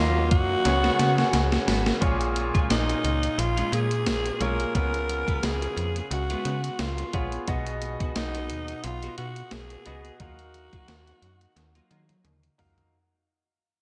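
1980s-style pop at 88 BPM with a nostalgic, glossy mood, cut from a longer piece, where a breathy, raspy alto saxophone with vibrato and scooped notes carries the melody up front over a clear concert grand piano with audible action noise, a snappy slap-like FM bass with a metallic attack, a very quiet, twangy twelve-string electric guitar riff entering at 0.2 seconds, and a gated 80s digital drum machine with a thumpy kick, gated reverb snare, hi-hat, tambourine and tom fills, all set in a lush hall with a big arena sound and fading out from 2.0 seconds over chords moving from D#madd9 through A#m7 and G#m7/B.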